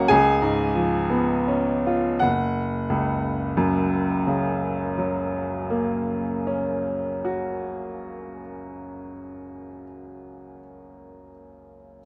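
Dreamy and serene, this short fragment from a longer romantic nocturne unfolds for solo upright piano in F# major, moving in a slow, rubato 12/8 at roughly 25-34 BPM counted in dotted quarters. The piano sits up front with a clear, woody tone that has a vintage character and long, smooth sustain, spanning from F#1 up to A#5. The opening moments slow down as a C#7 chord at 0.1 seconds leans toward resolution, arriving on F# at 2.2 seconds where a new section begins. From there the music settles into its tonic, carried by the instrument's lingering resonance. Close, detailed microphones capture the piano's intimacy, while a moderate recital hall reverb lends a gentle sense of space around it.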